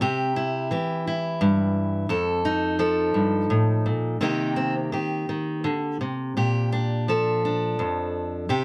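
A lone fingerpicked steel-string acoustic guitar opens this short folk excerpt, playing solo from the first moment to its close at 8.6 seconds. The mood is gentle and unhurried, moving in a rubato 6/8 around 57 beats per minute, counted in dotted quarters, in B-flat major. The harmony passes from C to F7, then Cm7, and settles on Bb6, giving the brief passage a soft, open-ended feel. The guitar sits up front with a warm auditorium tone, and finger squeaks on the strings add an intimate, human detail. A light reverb surrounds the instrument, lending a touch of space.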